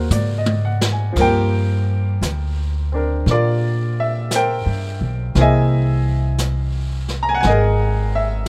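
A slow swung four-beat pulse sets up this tender, romantic jazz ballad, taken from a longer piece. A brushed drum kit adds a short fill from 0.1 to 1.2 seconds, its dark cymbals, medium-tuned snare and boomy kick sitting mid-forward in a small room with a rolled-off top. The pizzicato upright bass is up front, its steel strings giving a woody, warm low end. Also up front, the upright piano plays the accompaniment with a bright, brilliant, natural tone and short sustain. The harmony moves from Ab9 to Gm7 at 1.2 seconds and then to C7alt at 5.4 seconds, all in a dry sound with little reverb.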